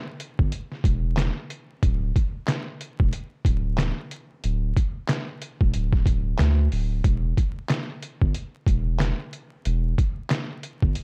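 Reflective yet tough, this short boom-bap hip-hop excerpt moves at 92 BPM in 4/4 with a lazy 16th-note swing. A compressed, pitched-down, muffled sampler-style drum kit sits up front with a thumpy kick, a medium-tuned snare, handclaps and hi-hat. A deep, round sub bass with a fast attack holds sustained notes between D1 and D2 from 0.4 seconds. The dry, dark production carries a layer of vinyl crackle.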